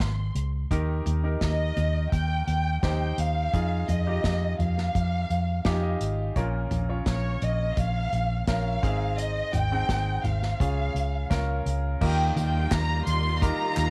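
A straight 4/4 pulse at 85 BPM drives this uplifting, warm piano-driven pop passage in Eb mixolydian, where an airy small-room acoustic kit played with bundle sticks and a punchy kick sits under a dark, round, foam-muted electric bass up front and an expressive violin section carrying the melody with vibrato and portamento; a brilliant, short-sustained grand piano enters at 0.7 seconds and adds a fill midway, lush bowed symphonic strings arrive in the background at 12.0 seconds, and crisp group handclaps join at 12.7 seconds, with the violins, drums, piano and strings colored by cassette tape and the whole set in light reverb with a homespun studio ambience.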